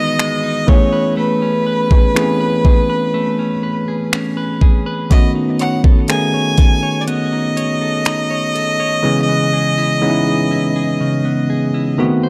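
Dry and intimate, this dreamy, tender contemporary R&B excerpt moves at a slow 61 BPM in 4/4, tuned to A4 = 439 Hz, with a clear, smooth bowed violin carrying the melody through tape echo and light vibrato, a bright, bell-like tine electric piano accompanying up front, a clean, compressed electric guitar picking arpeggios through spring reverb, and a produced electronic kit of finger snaps, warm hi-hats and a knocking kick playing from 0.2 to 8.8 seconds, over chords that pass from Emaj7 through Amaj9 and B9 to C#m7.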